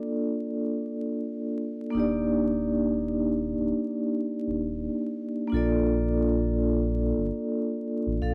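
Out of free time, this short lo-fi hip hop fragment in Bb major drifts with a dreamy, nostalgic air, cut from a longer piece and lasting just over eight seconds. A vibraphone struck with medium hard mallets carries the accompaniment from the start, its metallic, ringing tone sitting up front with a slow motor vibrato and the boxy character of a small room, all colored by cassette tape. For the first 1.9 seconds the vibraphone plays alone over a Bbmaj7 chord. Then a sub bass with an added octave enters beneath it, deep and full with a sine-and-triangle tone, a fast attack and long sustain, as the harmony moves to Ebmaj7 before returning to Bbmaj7 at 5.5 seconds. The whole sits in a damp booth ambience with the feel of a home cassette recording, dusted with vinyl crackle.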